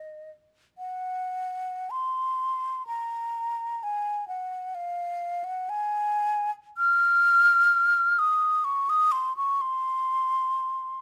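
A mellow, hollow concert flute plays alone through this 11-second excerpt of a free, expressive classical piece in 3/4, its airy, tongued line with vibrato sitting up front in a close, detailed, nearly dry recording as it moves with lyrical, nostalgic rubato between Eb5 and F6.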